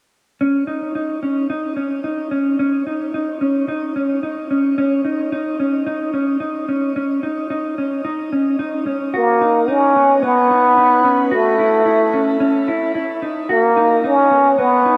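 A mellow, dark-toned electric guitar opens at 0.4 seconds, playing clean, fingered arpeggios over a C#sus2 chord, its compressed sound sitting up front and touched by subtle chorus and digital delay. This is a floating, blissful dream pop passage at 110 BPM in a straight 4/4, cut from a longer piece and bathed in a wet shimmer reverb with a long 4.2-second tail. At 9.2 seconds a trombone with a plunger mute enters to carry the melody as a solo, bright yet muted, with a wah-wah voice, vibrato, scooped notes and a smooth top in a pop style, echoed by its own digital delay. Beneath it the harmony moves through Bmaj7, F#m7 and back to Bmaj7, while the guitar keeps up its arpeggios to the close at 15.0 seconds. Both parts sit prominently in the mix, the trombone the louder of the two.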